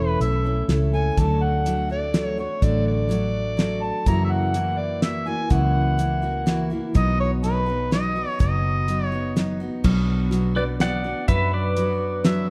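A dark, warm production sits in a moderate recital hall reverb, giving this short cut from a longer piece a nostalgic, down-home air. It is honky-tonk and classic country in 3/4 at 124 BPM with a straight feel, moving through A, D, F#7 and B before turning to Bm. A mellow, vintage harmonica takes the solo up front for the first 9.8 seconds, shaping scooped notes in a pop style, while a bright, full-bodied dreadnought acoustic guitar is picked close beside it. Underneath, a foam-muted, round electric bass carries an amped tone, and a dry 70s drum kit with a fat snare, tight kick, hi-hat, shadowy crash cymbal and rolled-off top holds the rhythm. At 10.6 seconds a twangy pedal steel guitar steps forward with the melody, clean and compressed, played with fingerpicks, slide and volume swells.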